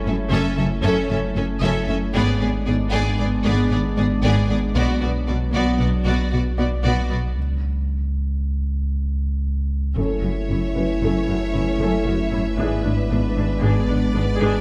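The recording sits in a moderate scoring-stage reverb with faint lossy compression artefacts, giving this cut from a longer cinematic score a futuristic, vast feel. It moves at 115 BPM in 5/4 in F# minor, with a warbling, nostalgic tape-like pad holding detuned chords in the background over a deep, round sub bass placed up front, while a very quiet felt-muted upright piano adds an intimate texture. A lush violin section carries an expressive, vibrato-rich melody until 7.2 seconds, supported by a focused second violin line, intense violas, distant cellos and clear double basses, both bowing low in the background. The harmony passes through F#m7, G#dim and Bm before a break at 7.4 seconds. At 10.0 seconds, a dark, roomy French horn section enters with sustained chords beneath a filter sweep as the F#m7 and G#dim chords return.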